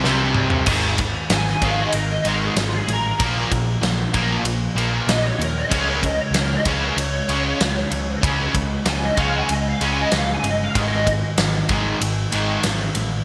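A bright 1980s-style digital production in a lush hall sets this driving, menacing hard rock excerpt at 95 BPM, where a fat-snared, gated big rock drum kit opens with a fill before a picked, overdriven lead guitar with chorus and digital delay solos from 1.3 to 11.1 seconds over two background riffing guitars, one bright with chorus and the other sludgy and dark, and a round, punchy hollow-body electric bass, all moving through power chords on C, Ab, Bb and Db.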